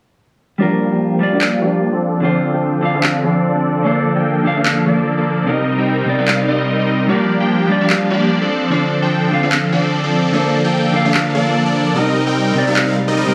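Heavily compressed, radio-like sound with small room ambience and a moderate digital reverb frames this euphoric, lush future bass passage, cut from a longer piece and moving at 148 BPM in a half-time feel with light swing on the 16ths. Huge, bright, detuned supersaw chords carry the riff up front through a filter sweep and tape echo, while a dark, clean, fingered electric guitar with its own tape echo accompanies over a cycle of Gm7, Dm7, Bbmaj7/D and Cm7. Electronic handclaps, re-recorded in a small room, sit up front from 1.4 s, and a background electronic swell arrives at 13.0 s.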